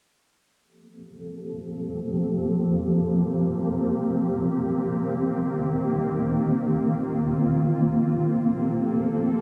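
This hazy, spacious hip hop fragment, cut from a longer piece, opens at 1.2 seconds with a granular cloud pad that sits up front and holds sustained chords until 9.4 seconds. Its tone is blurred and detuned, with a mellow, full-bodied sine core that blooms through a slow attack and lingers on a long release. The harmony moves from Gm11 to Cm7 and settles back on Gm11 by 8.0 seconds. A filter sweep runs across the pad through the fragment, and its own reverb and low-pass filter keep the texture evolving and cloudy. The whole space is bathed in a huge ambient reverb with an 8.5-second decay, leaving a drifting, weightless impression.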